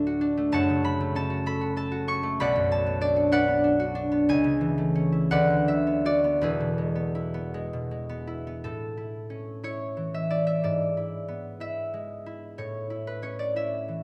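Peaceful and graceful, this 14.0-second classical excerpt features a solo concert harp, fingerpicked and ringing with a warm, up-front acoustic tone in a moderate recital hall, drifting through a rubato 6/8 at roughly 53-65 BPM in A major, spanning E1 to C#6 and passing from D through F#m, Bm and E before settling into a new phrase on A at 8.6 s.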